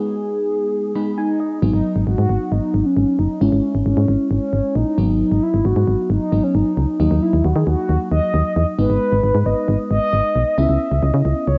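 A dusky home cassette recording with a moderate spring reverb and a dulled top end carries this cool, nocturnal synth-pop fragment, cut from a longer piece. It opens on a brief break in which the soft, full-bodied FM electric piano, with its chorus, tape grit and faint noise layer, plays a fill from 0.7 s. At 1.6 s the punchy, round FM bass enters up front, beneath a horn-like synth lead that has been singing the melody from the start, its sawtooth-and-sine tone, wave-folding, filter sweep and vibrato passing through chorus, tape colour and analog delay.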